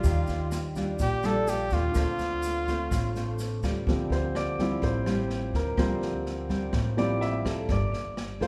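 A close-miked flugelhorn with vibrato carries a wistful melody up front before falling silent at 3.4 seconds, and the baby grand piano, natural and present, then takes a solo from 3.9 seconds. Beneath them in this melancholic bossa nova fragment, a dark, fingerpicked nylon-string guitar, a woody pizzicato upright bass and a smooth jazz kit with a boomy kick, rim click and snare hold the straight 4/4 groove, while a grainy tube shaker sits in the background until 3.9 seconds. It all rings in a moderate recital-hall reverb.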